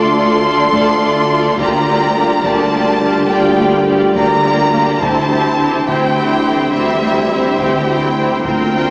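Heard from further back in a wet scoring stage with a two-second reverb tail and a small-speaker quality, this short excerpt from an epic, dark cinematic orchestral score moves at 70 BPM in a straight 12/8, tuned to A4 = 438 Hz. Up front, a warm, focused violin section carries the melody between E5 and C6 with vibrato and a smooth top. A second, richer and more distant violin section sings a line beneath it with expressive portamento, while the violas fill in lush bowed accompaniment. The low end rests on D2, shared by a close-miked, dark tuba, a very quiet soft-attack cello section and a woody double bass section in the background, under sustained chords from a tight, very quiet French horn section and a mellow trombone section with light vibrato. The harmony moves from Dm to Gm7/D at 1.6 seconds and to C/D at 5.0 seconds. A taiko ensemble with heavy sticks joins in the background at 0.7 seconds, and round, calf-headed timpani played with soft mallets enter at 1.6 seconds and close with a fill at 8.5 seconds.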